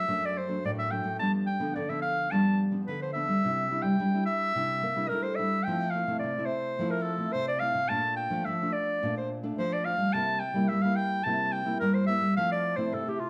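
A clear clarinet sits up front and carries the melody in a classical style, playing solo over the full 13.3 seconds of this joyful, sunny passage of samba and choro. Beneath it, one nylon-string guitar plays the accompaniment with a dark, acoustic tone, its fresh strings thumb-plucked in a classical manner. A second nylon-string guitar handles the bass line from 0.1 seconds, small and warm in character and also thumb-plucked. The straight 4/4 feel moves through a harmonic path opening on D/F#, passing through G7, Cadd9 and Fmaj7, then Bbmaj7 and C7 before settling back on Fmaj7. Recorded as a band playing live in one room, the trio is framed by moderate studio reverb, and the section is cut from a longer piece.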